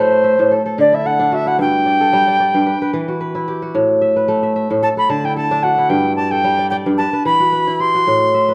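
A pure-toned tenor recorder carries the melody throughout this 8.5-second cut from a longer west African traditional piece, its chiff and vibrato giving the line an expressive quality. Beneath it, a fingerpicked kora rolls out ringing, crisp arpeggios over a cycling Am, D, G5, Em, A5 progression, and the lightly swung 4/4 feel lends the whole a hypnotic, warm sway. A moderate recital-hall reverb adds a soft halo of space around both instruments.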